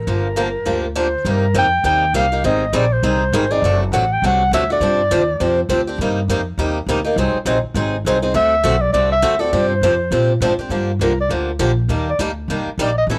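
A mellow, present clarinet with jazz vibrato carries the melody in this fiery, virtuosic fragment of acoustic string swing in C minor at 203 BPM, taking a solo from 10.7 seconds, while a bright, boxy picked guitar with audible finger squeak and a woody, growly pizzicato upright bass on steel strings drive the swing up front, the clarinet and guitar carrying a cassette-tape tint in a lightly reverberant home recording.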